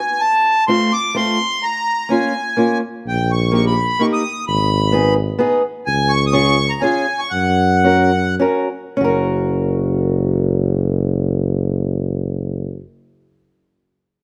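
Festive and bouncy, this short cut from an alpine folk piece in 3/4 moves at 97-129 BPM in F# major, with a close, detailed sound and light reverb. A reedy, airy accordion carries the melody up front until 8.4 s, over a fingerpicked old ladder-braced acoustic guitar whose dark, woody, boxy tone with old strings supplies the accompaniment from 0.7 s. A mellow tuba with light vibrato and a classical touch enters on bass at 3.1 s, and the music slows down between 5.9 and 9.0 s before a new section begins.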